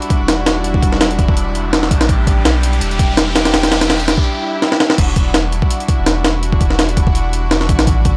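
Dark and nostalgic, this drum and bass cut with a jungle edge runs at 166 BPM in E minor, opening on an Em9 chord as a rich, floating string section sustains bowed chords beneath a compressed, pitched-up breakbeat kit with a thumpy kick and high-tuned snare, while a deep, round dub sub bass enters at 0.2 seconds. An electronic riser builds in the background from 0.7 seconds, giving way at 4.3 seconds to a brief break with a swell and a drum fill before the drop lands at 5.0 seconds. The drums sit up front with a gritty, tape-warm character, and the whole dry, hardware-colored recording carries transformer saturation and vinyl crackle.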